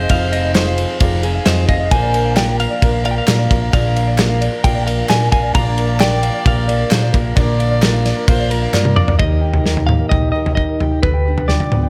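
Uplifting and warm, this indie folk excerpt moves at 132 BPM in a straight 4/4, with a building arrangement over chords moving from Fm7 to Bb and later Eb and G7/D. A compressed clean electric guitar carries the melody with tremolo, while a nasal, earthy fiddle traces a second line in the background through a digital delay. Beneath them, a woody upright piano with audible action noise, a shimmering octave-doubled twelve-string acoustic guitar and a light tenor ukulele playing arpeggios fill out the accompaniment. A round, amped fingered electric bass holds down the bass line, while a loose indie drum kit with a punchy kick and dark cymbals sits up front, joined by crisp, dry group handclaps from 0.6 seconds. After a drum fill, the fiddle, piano and twelve-string drop out at 9.2 seconds, and a bright fingerpicked steel-string acoustic guitar with fresh strings and finger squeak takes over the accompaniment, all set in light reverb.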